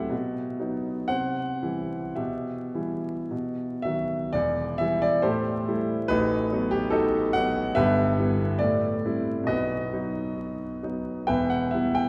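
Classical romantic character piece for solo piano, stormy and passionate, in 2/4 with a freely breathing rubato that sits in a slow-to-moderate pulse. A concert grand with deep bass, a smooth and vintage tone, and an up-front presence plays alone throughout, reaching from the low register up to G5 in a short fragment cut from a longer work. A new section begins at 4.3 seconds, and the harmony drifts through Am7 and B7 colours before settling on E minor at 11.3 seconds, all bathed in a long, wet church reverb with a touch of vinyl crackle.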